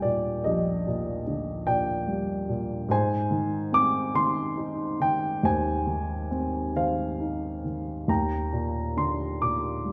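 Bathed in a wet recital-hall reverb, this brief cut from a longer classical piece places a mellow, vintage-toned baby grand piano up front in a church or concert hall. Playing alone at a rubato 45-49 BPM in 6/8, the piano carries a lyrical, reflective line in E-flat major with a smooth tone, ranging from Bb1 to D6. The harmony rests on Ebmaj7, shifts to Ab6 at 2.9 seconds and settles back on Ebmaj7 at 8.1 seconds, sustaining a dark, inward mood.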